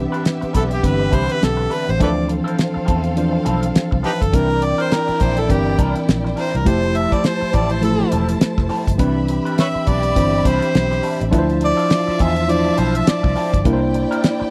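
Romantic and warm, this short cut from a lush 1970s-style soul piece in C major moves at 103 BPM with a swung sixteenth-note feel, as an up-front jazz-style harmonica solo with vibrato, scooped notes and tongue slaps sings over a worn, slightly out-of-tune tine electric piano, a dark, round foam-muted fingered bass, a cloth-damped thuddy drum kit with a fat snare and tight kick, a slightly broken-up lo-fi guitar riff with wah and harmonic tremolo in the background, and a distant bowed violin section, all captured in a dry, close studio sound as chords like Cmaj9, Dm9, C9 and Fmaj9 drift by.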